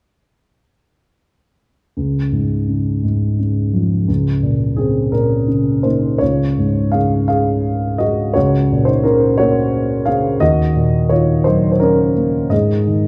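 In a rubato 6/8, this tender, calm excerpt of lyrical classical solo piano is carried by a dark grand piano that sounds mellow, intimate and up front, with audible action noise, playing from 2.0 s to 13.1 s in a moderate recital hall reverb and arriving at an Ab5 chord at 12.5 s.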